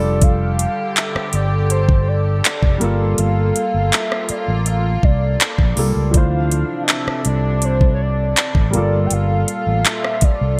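A bright, 1980s-style digital sheen with light reverb frames this longing, late-night contemporary R&B excerpt in G dorian at 81 BPM, moving through F69, Gm9 and Dm9 chords. A velvety sawtooth synth lead with chorus, delay and vibrato carries the melody over an intimate grand piano whose action noise is audible, while a distant, reedy string section holds sustained chords with sidechain pumping. Up front, a round fingered electric bass plays from the start, and a produced drum kit of knocking kick, metallic hi-hats, handclaps and rim clicks, bathed in gated reverb, enters at 0.2 seconds, the two together driving the groove.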